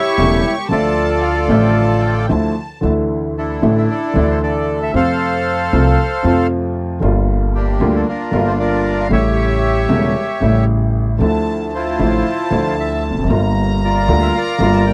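A reedy, up-front bandoneon carries the melody through this dramatic, sultry tango excerpt in a rubato feel, over an intimate baby grand piano whose action noise is audible and a woody, growly pizzicato upright bass, while a soft, floating sul tasto violin section adds a pure second line until 2.8 s and returns at 11.2 s, all in a dry, close 1970s-style studio sound with light reverb.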